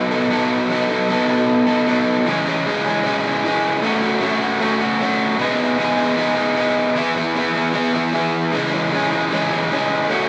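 Recorded live in a large studio room with a moderate reverb tail, this short rock clip puts a raw, overdriven electric guitar up front, picked and double-tracked for a thick, jangly edge. At a straight, carefree 154 BPM in 4/4, the guitar plays solo from E3 to A4, opening on a B7 before the second section arrives at 2.3 seconds and moves through C#m, F#m, G#m and E, then back to C#m.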